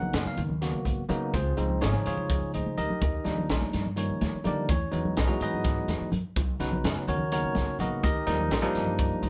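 In a straight 7/8 at 251 BPM in eighths, this slick, funky electric jazz fusion excerpt sets a bright, bell-like tine electric piano up front over woody, growly pizzicato upright bass, a crisp drum kit with a high-tuned snare, tight kick and pumping room sound, and soft-handed, damped congas in the background, moving through major-ninth chords from Bmaj9 to Ebmaj9 in light reverb, with a drum fill at 2.5 seconds and a closing electric piano fill at 9.0 seconds.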